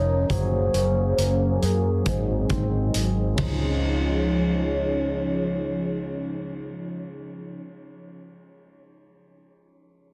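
A straight 4/4 dream pop fragment, floating and blissful, moves over Gbadd9, Ab7 and Dbadd9 chords, with a round, foam-muted electric bass sitting up front and a gritty garage drum kit with a boomy kick playing hi-hat, kick and ride from 0.3 to 3.6 seconds. A smooth, detuned sawtooth pad holds sustained chords while a twangy, clean electric guitar picks arpeggios through lush chorus and digital delay, and a hollow, woody synth lead with vibrato carries a soft melody in a narrow upper range. A filter sweep runs through the opening 3.8 seconds, and light reverb surrounds a dense, heavily limited modern master.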